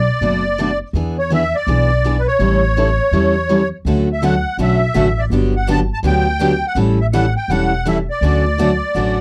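A swung 4/4 groove at 165 BPM drives this playful fragment of acoustic string swing in D major, where a reedy, shimmering musette accordion with slapback echo carries the melody up front over a woody, thumpy pizzicato upright bass and a full-bodied, picked jumbo steel-string guitar. A bright, boxy parlour guitar with audible finger squeak joins the accompaniment at 3.9 s. The chords move from Bm7 through E7 and A7 to Dmaj7 and Gmaj7, all in a dry, close 1970s-style studio recording.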